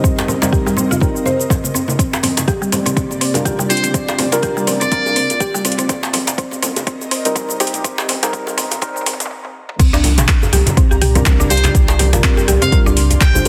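Afro house with a hypnotic, earthy swing, cut from a longer piece, where a deep, up-front electronic kick and a layered kit with metallic hats drive beneath cracking djembe and damped, low-tuned congas in the background, while an ethereal pad, a woody FM pluck and a warbling, vintage chord stab pump against the beat, the pluck and stab colored by chorus and tape echo. A filter-swept build-up with drum fills runs to a short break, and a distant, buzzy trumpet in a metal mute states jazz-style phrases at 3.7 seconds and again at 11.5 seconds. The drop lands at 9.8 seconds with a round sine sub bass, all sitting in a lush hall reverb under a dense, heavily limited master.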